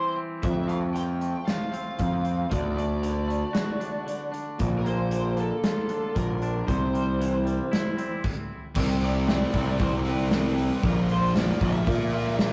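An overdriven lead guitar from a small cranked amp plays the melody over clean, compressed, twangy fingered arpeggios from a second electric guitar run through digital delay, before a growly, up-front fuzz bass and a big, dark acoustic drum kit with a fat snare and punchy kick join at 0.4 seconds in a half-time feel at 115 BPM, and after a stop at 8.2 seconds a bright, distorted fuzz guitar riff enters at 8.8 seconds, all in a brooding, cathartic stretch of quiet-loud alternative rock captured as a rough rehearsal-room recording with light reverb and warm saturation.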